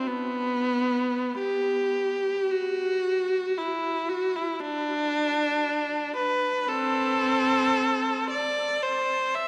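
Rubato phrasing stretches a gentle 3/4 pulse that drifts between 43 and 59 BPM, giving this classical fragment a free, expressive feel. A single viola plays throughout the 9.5 seconds, bowed with vibrato and ranging from B3 to E5, its tone clear and focused. The instrument sits close and up front, while a long cathedral reverb of 5.1 seconds blooms around it and a vinyl crackle runs beneath. The mood is serene and nostalgic, and the short passage feels lifted from a longer work, tuned slightly bright at A4 = 442 Hz.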